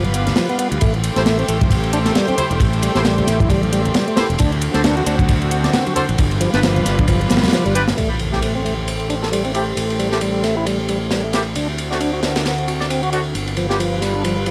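Breakbeat cut from a longer piece, funky and swaggering at 134 BPM in A minor with a 16th-note swing, cycling through G7, Am7 and D7 chords. A crunchy, saturated breakbeat kit sits up front with a tight kick, medium-tuned snare and dark ride cymbal, joined by an overdriven electronic hi-hat and, until 7.9 seconds, very quiet soft-handed congas. Underneath, a fuzz fingered electric bass growls in the low register while a fat tonewheel organ plays the riff with key click, chorus vibrato and a slow rotary speaker, its overdrive and delay adding bite. A lush, detuned sawtooth pad holds sustained chords with a slow attack, carrying vintage sampler grit and sidechain pumping, and a bright, tight horn section punches in stabs from 1.2 seconds. An electronic impact marks the second section at 8.0 seconds, and vinyl crackle with light reverb gives the mix a dusty, lived-in sheen.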